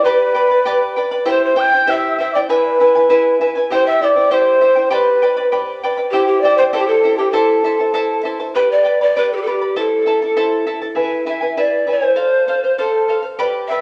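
Large cane pan pipes, breathy and reedy with a chiffy attack, vibrato and tape echo, carry a melancholic, wistful Andean folk melody at 99 BPM in 2/4 over a bright, shimmering fingerpicked charango with double strings, while an end-blown quena adds a tongued, close-miked second line above until 8.2 seconds and returns at 12.8 seconds, the whole home cassette recording set in a lush hall reverb.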